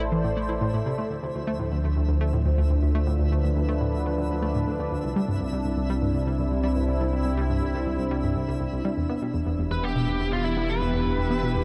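A dark, spacious mix drenched in huge ambient reverb carries this hypnotic, expansive slice of sequencer-driven space music at 122 BPM, where a detuned sawtooth pad with chorus and shimmer sustains chords from Am through Dm7, Cadd9 and Em7 over a mellow, chorused analog pluck riff with delay and a deep, wave-folded round analog bass, while a twinkling granular texture fades in from 0.1 seconds and an overdriven, picked lead guitar with shimmer and delay enters up front at 9.7 seconds.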